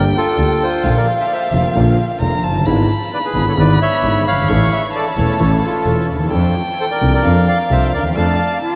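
A sultry, passionate tango excerpt at 131 BPM in 4/4, played with a rubato feel and drenched in a huge, dreamy reverb. A reedy, bright bandoneon carries the melody up front with delay, while a violin sings a second line with vibrato and portamento over a baby grand piano washed in lush chorus and a bowed double bass that sounds biting, nasal and earthy. Over chords moving from Gm through E7/G# and A to Dm/F, a clarinet with a soft attack slips in at 8.6 seconds on a single classical-style note.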